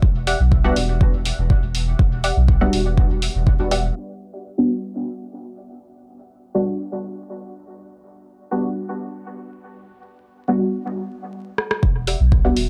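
A straight 4/4 pulse of deep, tape-warm electronic kick, punchy analog drum-machine hi-hat and rim click, and round, soft sub bass with tube saturation and sidechain pumping opens this nocturnal dub techno excerpt, soon joined by a muted, filter-plucked chord stab steeped in chorus and dub echo and a dark, full-bodied, detuned chord stab. At 4.0 s the others fall away to leave that dark stab alone under a long filter sweep with phaser and echo. A drum fill follows, then the return of kick and bass at 11.8 s, with the plucked stab just after, all inside a dry, gritty, low-passed recording flecked with vinyl crackle.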